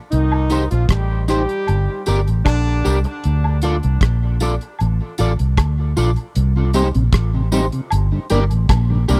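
Heavy and deep, this short dub reggae excerpt moves at 77 BPM in C dorian, built on a dark, foam-muted electric bass and a dry, tight-kicked 70s drum kit with hi-hat and rim click, both sitting up front in a close, small-room 1970s-style studio sound. A smooth-topped horn section with light vibrato sounds only briefly at the start, through 3.0 seconds, carrying dub echo, while a slightly broken-up picked electric guitar carries chorus and echo, and background woodblock, tambourine, maracas and handclaps trail their own echoes. At 6.4 seconds the second section begins over Cm and Gm, and at 6.6 seconds a mellow tonewheel organ with key click and slow rotary speaker fills out the lower harmony.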